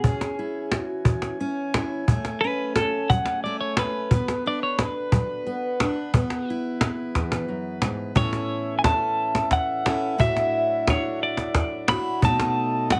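A clean electric guitar carries the melody up front, its compressed, scooped tone shimmering with harmonic tremolo as it takes a solo through the first 8.2 seconds of this peaceful, gentle acoustic folk piece in a straight 6/8. Beneath it, a fingerpicked steel-string acoustic guitar adds bright, full-bodied accompaniment with the sparkle of fresh strings. A warm, close-miked woodwind section holds sustained chords in a classical style, sitting further back in the mix. An up-front cajon supplies woody percussion with faint snares and a vintage, band-limited character. Light reverb and close, detailed miking give the small ensemble an intimate feel as the harmony drifts from C#m through F#madd9/C# and Bm/D toward a brighter turn on A at 8.2 seconds, closing on B7 in this excerpt from a longer piece.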